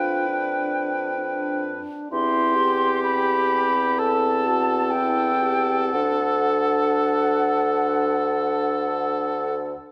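Flexible rubato stretches a slow 4/4 pulse of about 57-66 BPM in this tender, lyrical passage from a romantic movement for wind quintet, moving through G7/F, C/E, Am7/E and D. A hollow, pure silver concert flute with vibrato carries the melody above an up-front, warm oboe second line, while a dark, present clarinet and a smooth-topped French horn with light vibrato supply the accompaniment. A mellow, distant bassoon anchors the bass, and a moderate recital hall reverb of 1.6 s surrounds the quintet.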